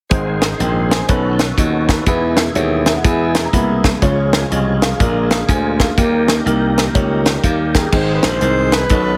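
A swung eighth-note feel at 123 BPM in 4/4 drives this uplifting, reverent uptempo gospel passage, cut from a longer piece. The tight funk drum kit sits up front in a small, natural room, with a high-tuned snare, kick, hi-hat and crash. Beside it, a bright, growly slap bass punches out the low end. A woody upright piano accompanies through chords moving from Ab to B9, E, Db, Bb7 and Eb, with a fill between 2.6 and 4.0 seconds. Meanwhile a full tonewheel organ holds sustained chords through a fast rotary speaker with light overdrive and chorus vibrato. At 7.8 seconds, just before the harmony returns to Ab, a close-miked alto saxophone enters with a jazz-style solo line, its subtone, scooped notes and light vibrato giving it a warm intimacy, while light reverb and heavy compression lend the whole mix a dense radio sheen.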